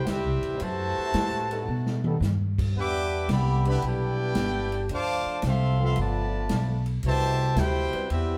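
A brilliant, up-front trumpet section carries the melody with light vibrato in this joyful big band swing excerpt at 112 BPM in C major, cut from a longer piece. Beneath it, a cup-muted trombone section adds a mellow, veiled second line from further back, while another trombone section holds warm sustained chords and a woody, thumpy pizzicato upright bass on gut strings sits close in front. A natural-sounding drum kit with a punchy kick swings on ride, hi-hat and snare, adding a fill at 1.7 s, as the harmony moves from Am11 through B7b13 and G9 to Cmaj7 in a club reverb heard from further back in the room.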